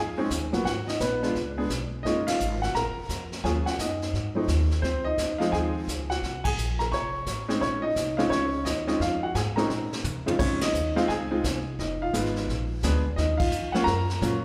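Late-night and smoky, this brisk swinging jazz piano trio excerpt at 173 BPM moves from Bb minor to Db major at 10.4 s, with an up-front, smooth upright piano carrying the melody over woody pizzicato upright bass and a distant vintage brush kit with dark cymbals that enters at 0.3 s, punctuated by band accents and a drum fill before the shift, all bathed in the lingering reverb of a recital hall.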